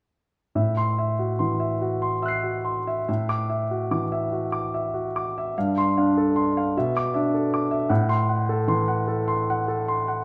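A clear, up-front concert grand piano with a deep, natural bass plays alone in a hazy, wistful impressionist classical vein, its rubato 6/8 phrasing drifting through suspended and minor-sixth harmonies from Am6 through E9sus4/A, G9sus4 and Bm7 back to Am6, reaching from G2 up to C7 and ringing in a wet stone room from 0.6 to 10.2 seconds in this short excerpt cut from a longer piece.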